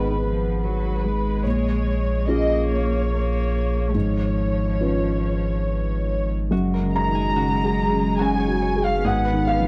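Dry, close small-room sound in a 1970s studio style frames this intimate, tender neoclassical passage in rubato 3/4, where a veiled con sordino violin section carries the melody over a muted cello's distant second line with portamento, a boxy, thick-felt upright piano accompanies, a deep sub bass with octave sits up front, and a ringing concert harp enters in the background at 6.5 seconds with slapback echo on its arpeggios.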